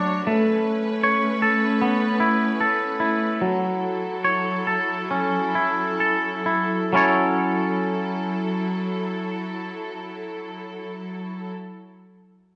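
A twangy, clean electric guitar plays fingered arpeggios up front through this brief cathartic, cinematic rock passage in F# minor, moving from Aadd9 to F#m7 at a slow 63-78 BPM in a straight 4/4, with the pulse slowing between 0.3 and 6.9 seconds. Alongside it, a clear symphonic string section, also up front, holds bowed, sustained chords with light vibrato and a smooth, intense top. Both parts sit in a wet recital hall reverb that gives the excerpt the spacious sound of a church or concert hall.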